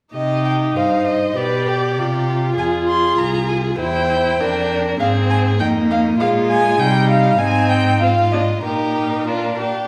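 A string quartet starts together at 0.1 seconds in a quick, dramatic, classical-period movement in C minor, 99 BPM in a straight 2/4. The first violin sings the melody from a distant place with expressive vibrato and portamento, while the second violin plays a close, soft-attacked second line. Below them, a rich, focused viola carries the accompaniment and an up-front, clear cello holds the bass, all bowed in an urgent passage that moves from C minor to Bb within the wet reverb of a recital hall.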